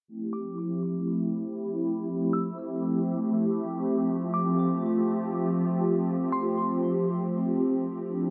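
A hollow, flute-like pad opens this dreamy hip hop fragment in free time, holding a sustained Fmaj9 chord up front with a warbling ensemble chorus and a filter sweep running through its full 8.3 seconds. At 0.3 s a glassy FM synth bell enters high above with a crystalline melody, shimmering through chorus, phaser and tape echo before fading by 6.6 s. A huge ambient reverb and dark production leave the whole floating passage, cut from a longer piece, suspended in F major.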